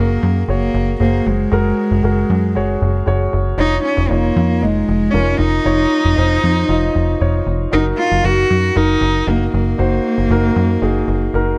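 Piano-driven pop at 116 BPM in a straight 4/4, this hopeful, anthemic fragment from a longer piece sets an intimate, softly bowed cello melody with light vibrato up front over a dark, mellow baby grand piano with long sustain. A punchy, funky analog bass with a detuned sawtooth-and-pulse tone, filter pluck and moving notch drives beneath, all three parts playing throughout the 11.6 seconds. The chords move from Gbadd9 to Dbadd9/F at 3.6 seconds and Ebm/Gb at 7.7 seconds, in light reverb with small room ambience.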